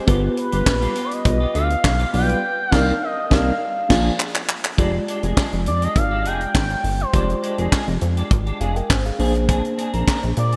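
Early-eighties boogie funk with a slick, late-night mood, set in a dreamy mix soaked in lush hall reverb, where a tight, up-front acoustic drum kit with high-tuned snare, handclaps and crash plays alongside a glossy, chorused pulse-wave synth bass, while a mellow tine electric piano and a clean, hollow-body guitar riff fill the middle, a dark, brassy synth brass line with chorus and analog delay sits in the background until 4.1 seconds, and a smooth, nasal synth lead carries the melody from 0.4 seconds, with a band accent and drum fill leading into the second section at 4.8 seconds.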